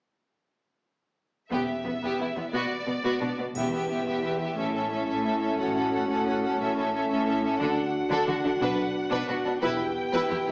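Swashbuckling and adventurous, this heroic film-score cut in 6/8 opens at 1.5 seconds with lush, vibrato-rich bowed strings (a smooth, distant violin melody over a focused, up-front second violin line, clear violas and expressive cellos) touched by soft-mallet timpani, then builds from 3.6 seconds as mellow French horns add sustained chords, a background double bass section deepens the low end and a brief triangle glints, all bathed in a wet recital-hall reverb yet heard through a small-speaker sound.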